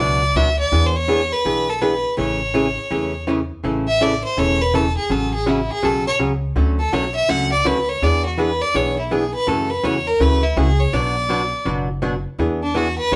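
A swung 4/4 groove at 164 BPM drives this down-home western swing country excerpt in A major, with a woody, pizzicato upright bass alongside a dark, compressed, picked hollow-body archtop guitar that sits up front through changes that include Bm, E7, Amaj7 and Dmaj7. A clear, bowed fiddle with light vibrato and an earthy, smooth top carries the melody, then takes a solo from 3.6 seconds to the cut at 13.2 seconds. The band plays live together in one room, wrapped in moderate studio reverb.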